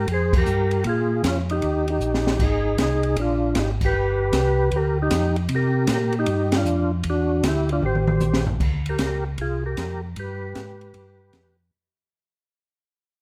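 Late-night and bluesy, this soul jazz organ trio swings in C minor at 155 BPM, with a percussive, lightly overdriven tonewheel organ carrying the melody through slow rotary speaker and chorus vibrato, while a second, round and dark tonewheel organ supplies a clean bass line. An acoustic drum kit in a small room adds dusky cymbals, a high-tuned snare and a boomy kick, all three parts sitting up front in light reverb, with band accents and drum fills punctuating the groove. A fade-out begins at 8.6 seconds and runs to the close of this short cut from a longer piece.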